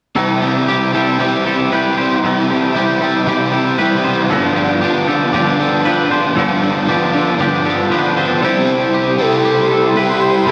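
Wistful and blissful, this rock excerpt moves at 117 BPM in a straight 4/4, sitting in C major and drifting from Cmaj7 to G7sus4 before returning to Cmaj7. An overdriven electric guitar carries the riff up front, picked with a warm grit and thickened by ensemble chorus, while a second twangy guitar, clean, fingered and compressed, also plays a riff from the background with a reverse reverb. Above them a bright, picked twangy guitar spins arpeggios, lightly touched by subtle chorus and delay. At 8.4 seconds a pure, breathy sine lead enters with a melody, gliding with portamento and vibrato over a dark sub-octave, treated with chorus and delay. At 9.5 seconds a granular cloud pad adds sustained chords in the background, its blurred, warbling, vintage texture evolving through its own reverb, and the whole dreamy mix is soaked in a long plate reverb.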